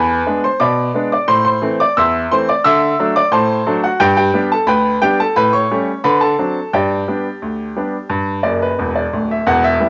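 Playful and jaunty, this short cut from a longer ragtime piano piece moves at 88 BPM in a straight 2/4, set in G major and tuned slightly low to A4 = 439 Hz. A lone upright piano carries everything, its tone bright, brilliant and woody, sitting up front and spanning a range from D1 up to E6. The harmony travels through a classic chain of chords, E7 to Am to D7 and home to G, then A7 and D7 before settling on G again at 6.7 seconds. Near the close, the piano adds a fill from 8.4 to 9.5 seconds. Light reverb and a studio ambience frame the playing, which was captured as a home recording on cassette.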